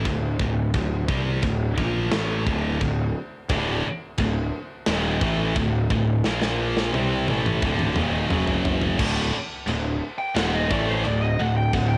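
Heavy metal in D phrygian dominant at 87 BPM, this short excerpt from a longer piece feels dark and epic, with the light reverb and cassette character of a home recording. A scooped, high-gain guitar sits in the background playing the riff from the start, while a growly, fuzz-toned picked bass with overdrive pushes up front beneath it. The tight metal drum kit, up front and gritty with vintage 12-bit sampler saturation, features bright china and crash cymbals, a medium-tuned snare, a tight kick and toms, and plays a fill from 6.2 to 9.0 seconds. A second, heavier high-gain guitar joins the riff at 3.5 seconds, both riff guitars carrying distortion and a cassette-tape sheen over power chords moving from D5 through Bb5 and F#5. At 9.0 seconds the music shifts into a new section, and a dark, distorted lead guitar enters at 10.2 seconds with a short solo in the C5 to G5 register.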